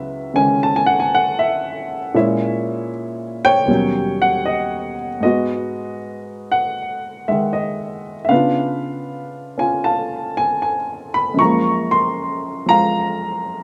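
Cool and late-night in mood, this solo jazz excerpt, cut from a longer piece, finds a dark baby grand piano carrying everything alone across its 13.6 seconds. The playing sits in 4/4 with a relaxed swing on the eighth notes, moving through a shadowy progression that opens on C#m11, passes through A#m7b5, D#7alt and G#m7, then settles from C#7b9 at 8.3 seconds onto F#maj9. The piano spans a broad register from C#2 up to C#6, and its tone is mellow and intimate, with short sustain and the natural, audible clatter of the action close at hand. A slapback echo adds a quick ghost of each note behind the instrument. Recorded outdoors, free of room sound and with little reverb, the piano sits up front, dry and immediate.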